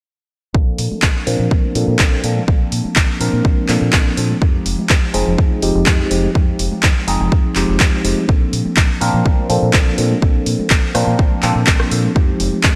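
A bright, clean tine electric piano sits up front in this sunny, feel-good filtered disco house excerpt at 124 BPM in Bb major, its chords of Bbmaj7 and Fm9 colored by phaser, sidechain pumping and a low-pass filter as a filter sweep runs from 0.5 to 12.8 seconds. Beneath it, a dark, round fingered electric bass pumps through the same filter, while an overdriven, layered electronic kick hits hard and a punchy analog drum machine adds handclaps, hi-hat and rim clicks from 0.8 seconds, its hats also pumping. Very quiet, vintage-toned tambourine and congas fill out the groove, all set in light reverb with a glossy 1980s-style digital sheen.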